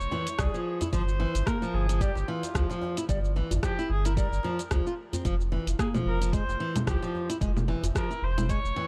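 The bowed kamancheh carries the melody in this short excerpt of organic downtempo. Its clear, nasal, earthy tone sits at a distance, shaded by light vibrato and portamento and trailed by tape echo. Up front, a fingerpicked flamenco guitar plays arpeggios with audible finger squeak and its own tape echo, while a round, mellow sine sub bass pumps under sidechain pressure. An electronic kick and a layered deep house kit of congas, hi-hat, rim click and shaker carry a tape-colored, small-room character, and a medium-tuned djembe with metal rattles sits far back in a large room. At 111 BPM with a loose sixteenth-note swing in F harmonic minor, the harmony moves from Fmadd9 to Gm7 and settles on F5 at 5.3 seconds, and the dry, dark production keeps the mood hypnotic and warm.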